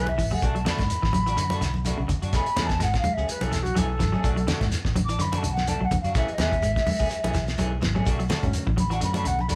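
Afrobeat at 126 BPM in B dorian, this defiant, intense passage from a longer piece rides a 16th-note swing over a Bm7 to Amaj7 vamp. A mellow, hollow silver concert flute carries the solo melody throughout, its pure tone marked by vibrato and a crisp attack yet set at a distance. Underneath, a round, punchy fingered bass anchors the groove, while a cloth-damped, thuddy drum kit sits up front with a fat snare, tight kick and gritty, saturated, muffled character, opening with a fill and adding another at 7.8 seconds. A bright, clean electric guitar picks arpeggios in the background, and a second, twangy guitar through a small old amp adds slightly broken-up stabs, with hard-hand congas and a very quiet, grainy shekere filling out the percussion. A reedy electric piano with fast tremolo slips in at 8.4 seconds, and the whole band plays live in one room with a moderate, large studio reverb.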